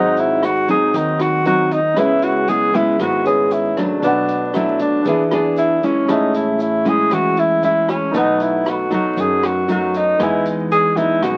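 Bossa nova at 117 BPM in E major, relaxed and sophisticated, cut from a longer piece, with a breathy, subtoned alto saxophone scooping its jazz melody up front over fingerpicked nylon-string guitar, a clear concert grand piano, a woody, growly pizzicato upright bass in the background, a vintage drum kit of hi-hat, punchy kick and rim click from 0.2 seconds, and a very quiet grainy egg shaker, all heard through moderate studio reverb and the crackle of a very old 78 rpm record as the chords move from G#7 through C#m7 and Amaj7 to Emaj7.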